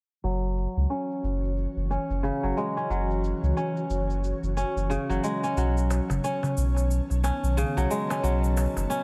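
A relaxed 90 BPM groove in 4/4 swings its sixteenths, with an overdriven, electronic shaker ticking softly in a small room from the start of this mystical, earthy organic downtempo piece in F# dorian. Crisp, ringing fingerpicked kora arpeggios sit up front, colored by a filter sweep and tape echo, while a deep, round sine sub bass holds the low end with mellow, sustained notes. At 1.0 seconds an ethereal, airy pad drifts in with slow-attack sustained chords, its detuned sawtooth and triangle layers thickened by ensemble chorus, phaser and a breathy noise layer. The harmony rests on F#5 before moving to B9 at 5.6 seconds. A clay-shelled darbuka played with soft hands joins at 5.9 seconds, adding a vintage, band-limited acoustic texture, all within a light studio reverb on this short cut from a longer piece.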